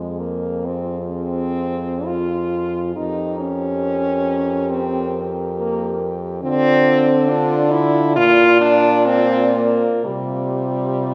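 Heard from further back in a wet concert hall, this tender, serene classical fragment for horn quartet moves at a rubato 59-71 BPM in 4/4, with a very quiet, mellow and punchy French horn carrying the melody, a second horn with light vibrato tucked in the background, a distant, roomy accompaniment horn sitting up front, and a clear bass horn anchoring the harmony from F minor to a Csus4 at 10.0 seconds.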